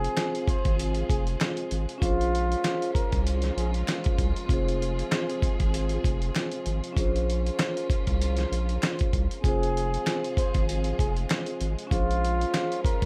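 A swung boom-bap groove at 97 BPM in 4/4 sets a reflective, moody tone in F minor, driven by a gritty, compressed sampler-style drum kit with a thumpy kick and a deep, saturated sub bass, while a very quiet finger snap and vinyl crackle sit under light reverb. A mellow vibraphone with soft mallets and slow motor vibrato rings through the Fm to Bbm7 changes, and a lush bowed string section holds sustained chords low in the mix. A dark, breathy trumpet with a bucket mute whispers a jazz-style solo line with scooped notes from the start until 3.7 seconds, returning at 9.4 seconds in this cut from a longer piece.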